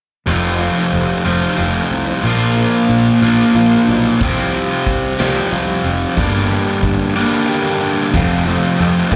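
This short excerpt sounds like a live club gig heard through the venue's PA, with a light club reverb around the band. It is brooding, angsty, quiet-loud alternative rock in 6/8, moving at a slow 61 beats per minute counted in dotted quarters with a straight feel. From 0.3 s a bright, compressed fuzz guitar plays a distorted, slapback-echoed riff up front, while a dark, clean, fingered electric guitar plays arpeggios with its own slapback echo in the background. Beneath them a growly, round fuzz bass, overdriven and played with a pick, holds the low end. A big, acoustic rock drum kit enters at 4.2 s with a punchy kick, a medium-tuned snare, hi-hat and bright crash cymbals in a big room. The chords move from F to Bb, Csus4 and G minor before returning to F as a new section begins at 8.1 s.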